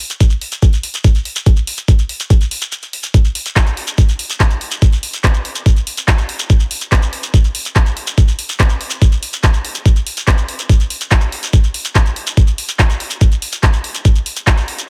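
A straight 4/4 pulse at 143 BPM drives this intense, psychedelic trance fragment, where an up-front, knocking electronic kick dominates the mix over a layered drum and bass kit of handclaps and bright hats, both re-recorded in a small room, while a close, grainy yet mellow acoustic shekere adds texture throughout, all in a dry space broken only by a short break from 2.7 to 3.1 seconds.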